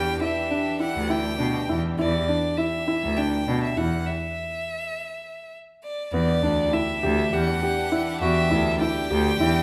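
A felt-muted upright piano plays soft, intimate arpeggios over an E minor seventh chord from the very start, together with a bowed cello bass, sustained chords from an earthy chamber string section in the background, and a bright, intense solo violin melody with vibrato and an airy bow up front. This urgent, hypnotic contemporary chamber piece moves in 7/8 at 202 BPM in eighths, with a stop from 4.1 to 6.1 seconds before a new section begins. The focused cello and close violin sit in a moderate recital hall reverb, and the recording is cut from a longer piece.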